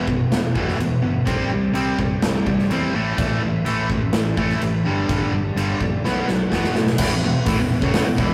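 A rough rehearsal-room recording with warm saturation and moderate stone-room reverb frames this menacing, heavy hard rock excerpt in E minor at 126 BPM in a straight 4/4. Up front, a high-gain distorted guitar and a punchy acoustic drum kit with bright cymbals drive the riff over Em, C5, A5, G5 and B5. In the background sit a cranked, overdriven stack guitar, a growly picked electric bass, and a thick, gritty tonewheel organ holding sustained chords through a slow rotary speaker with chorus vibrato. A drum fill from 6.0 to 7.0 s leads into a new section that lands on E5.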